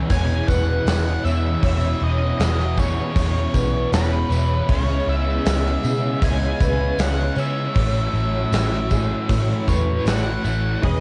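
Shoegaze-tinged dream pop rock at 78 BPM in 4/4, hazy and wistful, moving through E6, C#m7 and A6 in an 11-second cut from a longer piece with the lo-fi murk of a home cassette recording. A punchy gated 80s kit in a bright stone room and a round, foam-muted vintage bass sit up front, while a dark octave-fuzz lead guitar with analog delay sings a melody over a background bed of thick fuzz and tight double-tracked distorted guitar riffs, a clean direct-recorded guitar riff bathed in reverse reverb, and shimmering octave-doubled twelve-string arpeggios with finger squeak and chorus. A very quiet, mellow organ-string pad with phaser holds sustained chords underneath, and a jingly, saturated tambourine glints faintly until 10.6 seconds.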